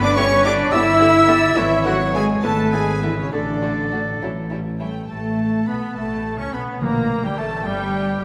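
A wet scoring-stage reverb surrounds this restless, dramatic fragment of a quick classical-period symphonic movement in 6/8, pulsing at 70 BPM in dotted quarters. A smooth, lightly vibrato-laden violin section carries the melody. A distant oboe, an airy, mellow flute ensemble and an expressive chamber violin group weave second lines around it, while dark horns hold sustained chords, a warm trumpet adds stabs, and a very quiet viola section fills in the accompaniment. Lush cellos and close, expressive double basses anchor the bass, a soft-attack clarinet joins at 5.1 s, and timpani with medium mallets enter briefly at 6.8 s.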